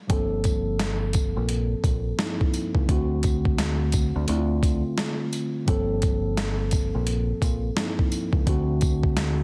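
At 0.1 s a mellow tine electric piano, a deep dub fingered electric bass and a boom-bap sampler-style drum kit start together in this reflective, tough hip-hop passage, cut from a longer piece. It moves at 86 BPM in 4/4 with a 62% swing on the sixteenths in G dorian. The electric piano supplies the chords, Gm11 to D7 and Dm7 and back to Gm11, its clean tone heard through built-in speakers and shaded by cassette tape with high-pass and low-pass filtering. Beneath it the bass sits dark and round, direct and amped, up front in the low register. The drums are gritty and compressed, with a thumpy kick, a medium-tuned snare and hi-hat, re-recorded in a large room and placed up front, while a jingly tambourine enters at 0.4 s in the background from a small room. The mix carries light reverb and a heavily squashed, radio-like sound.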